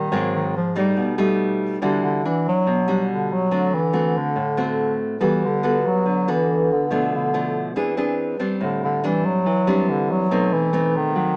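A bass clarinet carries the melody up front in this wistful, melancholic bossa nova cut from a longer piece, its warm, smooth-topped tone shaped by vibrato and scooped notes in a jazz-style solo line that stays low, between D3 and G3. Beside it and equally forward, a fingerpicked nylon-string guitar supplies the accompaniment with the warm, acoustic tone of fresh strings and a deep classical body, ranging from Ab2 to A4. The tempo is a brisk 141 BPM in straight 4/4, set in E minor and tuned slightly below standard pitch at A4 = 436 Hz. A brief opening on Ab9 and Baug7 gives way at 1.8 seconds to a longer passage moving through Em9, D7, Gmaj9 and Bm7b5 before E7b13 and Am7 lead toward a closing B7b9. The moderate studio ambience adds a short room tail, while the overall sound has the character of a small speaker.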